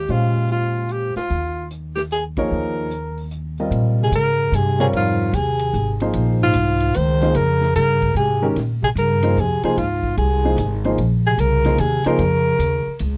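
Intense and hypnotic, this modal jazz excerpt swings in 3/4 at 149 BPM, moving from an Eb9sus4 chord into Bb dorian over Bbm11 at 3.7 s, after a band accent at 2.3 s. A breathy, subtone alto saxophone with scooped notes carries the melody up front. Beneath it sit a woody, thumpy pizzicato upright bass on gut strings, an intimate concert grand piano with audible action noise, and a big-band drum kit of hi-hat, boomy kick, ride and snare set lower in the mix, while a mellow bass clarinet with light vibrato adds a second line from 4.0 s in a dry, close 1970s-style studio sound with light reverb and lossy compression artefacts.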